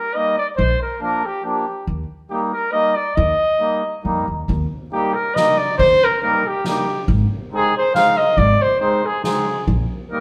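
A live band fills a stone room with a wet reverb in this short, bouncy fragment of alpine folk dance music, a jolly waltz in 3/4 with a lightly swung lilt. A roomy, classical-style flugelhorn carries the melody from the first moment, set in front as the lead voice. A mellow accordion with a reedy, airy, round tone supplies the accompaniment beneath it, while a woody, thumpy upright bass, played pizzicato on gut strings, enters at 0.6 seconds and sits close and present. At 4.5 seconds, as the opening phrase repeats, a drum kit played with soft mallets joins at a low level, bringing a boomy kick, a fat snare and dark ride cymbal. The harmony rests mostly on Eb and Bb, turns to Ab near the close, and settles on Eb over Bb.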